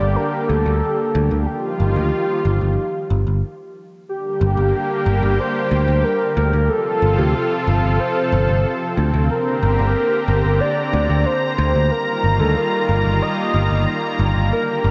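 From the first second, a velvety, wave-folded sawtooth lead with chorus and analog delay carries the melody over a thick, warbling unison pad and a growly picked electric bass, in this moody, nocturnal synthwave passage cut from a longer piece at 92 BPM in G minor, tuned to A4 = 438 Hz. After a brief break at 3.4 seconds, a new section begins at 4.1 seconds, moving through Gm, F/G and Ebadd9/G. A lush hall reverb soaks the dreamy mix, which holds nothing above 7.7 kHz.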